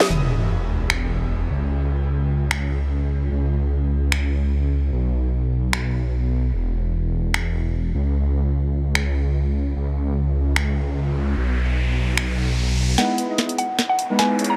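Dry and up-front, this playful, lush future bass excerpt in E major moves at 149 BPM with a swung half-time feel: a thick, saturated detuned saw bass with chorus drives the opening over a trap drum kit of sharp snare, bright hats and finger snaps, a sub drop hits at 0.1 seconds and a riser builds from 10.3 seconds, and at 13.0 seconds a drum fill and build-up bring back the smooth supersaw riff with tape echo alongside a woody, round mallet-like synth pluck melody over an Emaj7 chord.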